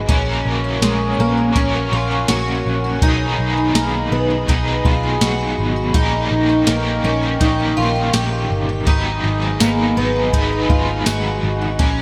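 A soft vintage rhythm box with a deep kick, tonal snare, metallic hats and tambourine drifts through gated reverb under a melancholic, hazy dream pop excerpt, where a round, foam-muted electric bass sits up front, a shimmering octave-doubled twelve-string acoustic picks chorused, delayed arpeggios, a bright double-tracked stack guitar adds overdriven, tremolo-laced accompaniment, and a warbling, detuned, lo-fi pad holds slow-attack chords across a plate-washed, 1980s-style digital sheen.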